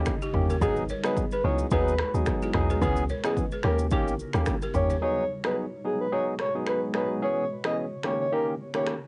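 A breathy, flute-like synth lead carries the melody through this mellow, smooth afrobeats fragment, its soft tone shimmering with chorus, vibrato and tape echo over a gently swung 16th-note groove. Beneath it, a bright, barky tine electric piano plays up-front accompaniment. A punchy, layered deep house kit of kick, finger snaps, rim clicks, shaker and toms drives the groove. A round, percussive log drum bass and a woody, buzzing balafon riff both drop out around 5.0 s, while a cloudy, evolving granular pad drifts in the background. The whole cut has the dry, muffled character of a home cassette recording, with much of the arrangement carrying tape coloration and the pad alone holding its own reverb.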